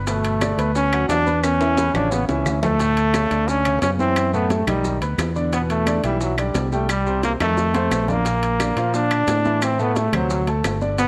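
Salsa at 176 BPM in D major, a danceable, festive cut from a longer piece in which a bright, punchy trombone with light vibrato carries the melody up front over a round fingered electric bass, a clear concert grand piano with long sustain, ringing timbales, woody claves, grainy maracas, high-tuned congas and low-tuned bongos, with drum fills at 1.4 and 7.4 seconds, chords moving from Gmaj9 through Dmaj9 and B7b9b13 to Cm, F7 and Bb, and moderate echo-chamber reverb.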